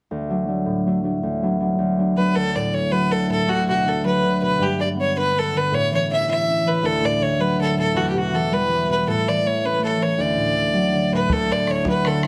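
A moderate studio ambience frames this lively, cheerful Celtic folk jig in D major at 107 BPM in 6/8, where a ringing, thumb-plucked concert harp opens alone before a rich, biting fiddle with light vibrato and plate reverb carries the melody up front from 2.2 seconds, and an open, boomy bodhran joins only at 11.3 seconds as the harp moves through D, Bm/D, G, A and Em in this brief cut from a longer piece.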